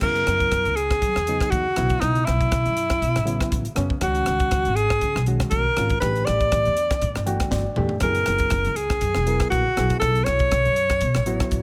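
Swung sixteenths at 120 BPM in 4/4 drive this funky, soaring electric jazz fusion fragment, where a clear alto saxophone with vibrato solos up front through slapback echo over a barky, lightly overdriven reed electric piano with spring reverb, a woody, growly pizzicato upright bass and a crisp, polished drum kit with a high-tuned snare and tight kick, the piano adding a fill at 7.0 seconds and the drums one at 7.5 seconds amid suspended chords from F#13sus4 to B13sus4 in a small room.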